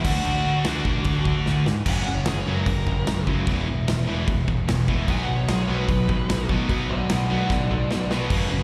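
A rowdy, upbeat punk rock passage bursts in at once with a big acoustic rock drum kit up front, a growling overdriven electric bass and a wall of riffing electric guitars. The kit has a punchy kick, a medium-tuned snare and bright crash cymbals, with drum fills at 1.5 and 7.5 seconds. Beneath it, the picked bass sounds direct and amped, while a tight distorted guitar adds a crisp edge. A hollow-body semi-hollow guitar sits warmly in the background, and a dark, double-tracked biting guitar is very quiet. From 1.9 seconds a bluesy, distorted lead guitar with slapback echo takes a solo over chords moving from D to F#, E and B. The whole performance sounds like a live gig heard through the venue's PA, with little reverb.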